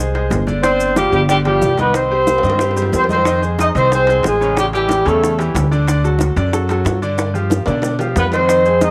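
A mellow horn section carries the melody up front, punchy and lightly touched with vibrato, its distant, roomy tone colored by cassette tape and tape echo; it plays from 0.6 to 5.4 seconds and returns at 8.2 seconds. This is a passionate, danceable salsa clip at 183 BPM in 4/4, cut from a longer piece, with chords moving from a rootless Fm through G7 and Cm to Fm7, A7, D and back to G7. A bright grand piano comps throughout with a brilliant, polished sound, audible action noise and long sustain, also carrying a cassette tape tint, while a woody, thumpy pizzicato upright bass on gut strings sits up front. Behind them, round low-tuned bongos struck with hard hands, ringing metal-shell timbales and very quiet congas with a thin, medium-tuned skin drive the groove, joined by grainy, compressed maracas. Drum fills arrive at 2.3 and 7.2 seconds, and the whole recording has the feel of a home cassette session in a wet-sounding studio space.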